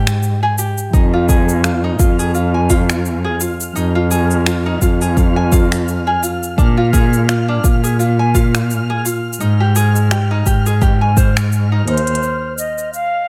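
A lightly swung sixteenth-note groove in 4/4 drives this autumnal, delicate folktronica excerpt, built on overdriven finger snaps, smooth hi-hat and shaker from an organic electronic kit, plus a deep, overdriven electronic kick, both re-recorded in a large room. Bright, fingerpicked tenor ukulele arpeggios run through a digital delay over a bowed cello bass line that sits up front, dark and expressive with vibrato and portamento, while a grainy, flickering granular texture hangs in the background with its own reverb. As a drum fill begins at 11.9 seconds, a mellow wooden flute with an airy, straight tone steps up front, and the chords drop away at 12.2 seconds.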